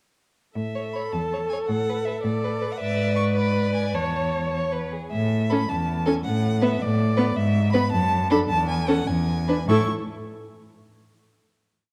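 A dark, warm concert-hall sound with moderate reverb frames this cheerful, spirited classical-period movement for string quartet in A major, moving quickly at 106 BPM in a rubato 6/8, where a rich, smooth-topped violin carries the melody with vibrato over a distant, clear second violin's after-beat and sustained chords and answers at phrase ends, an expressive viola's counter-melody with portamento, and an up-front cello's pizzicato and sustained bass on the beats, the whole tune stated twice before settling on a final chord at 9.7 seconds.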